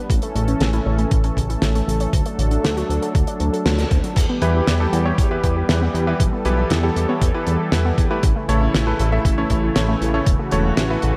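A thumpy, up-front electronic kick and a dry, damped 70s drum kit with a fat snare, crash and hi-hat drive this moody, nocturnal synthwave excerpt at 118 BPM in a straight 4/4, with a band accent at 3.7 seconds. A glossy chorused synth bass pumps with sidechain compression beneath a smooth, detuned analog pad holding sustained chords, while a warbling, lo-fi pluck spins chorused, delayed arpeggios in the background over an A to D to Em to A progression in E dorian. At 4.4 seconds a clear, clangy electric grand piano enters with delayed stabs, all set in light small-room reverb within a dark production.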